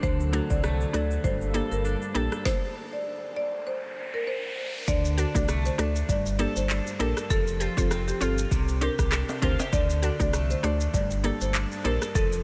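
A sultry, bouncy dancehall groove at 99 BPM in G minor opens with a woody rosewood marimba melody in tape echo, a hollow, flute-like pad, bright, twangy clean electric guitar arpeggios in lush chorus, an up-front sine sub bass with octave, and an overdriven electronic afro-pop kit with a deep kick, a snare, metallic hats, handclaps, rim clicks and shaker, joined almost at once by a round, FM-style mallet-like synth pluck. A stop arrives at 2.5 s, and an electronic riser enters at 3.2 s. At 4.9 s the groove returns with ringing, close maracas and timbales in a lightly reverberant digital space, as the chords move from D and Gmadd9 through Fadd9 and Csus2.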